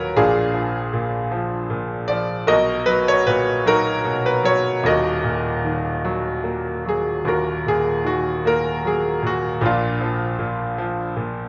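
In a rubato 6/8 metre, this dark, reflective classical fragment, cut from a longer piece, features a solo concert grand piano whose bright, brilliant tone and deep bass sit present and up front in a moderate recital-hall reverb, moving through shadowy minor harmonies with a dominant seventh and a major seventh chord over its 11.5 seconds.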